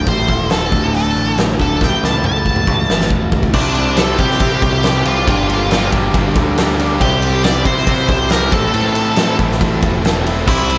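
Brooding and dark, this quiet-loud alternative rock excerpt drives forward at 138 BPM in a straight 4/4, cut from a longer piece. An up-front octave-fuzz lead guitar with a shadowy, distorted tone carries the melody with slapback and tape echo, taking a solo over the opening 3.5 seconds while the drums play a fill from 1.8 seconds. Beneath it, two bright, picked fuzz guitars grind out the riff in the background with slapback echo, and a growling, overdriven picked bass anchors the low end. The huge arena drum kit sits up front with a punchy kick, fat snare, toms, hi-hat, crash and ride in a natural big-room sound. At 3.5 seconds a very quiet, double-tracked crunchy guitar with a warm overdriven edge joins as the harmony moves through Cadd9, Gm7 and back to Am. A lush hall reverb and a touch of small-room ambience give the whole a big arena scale.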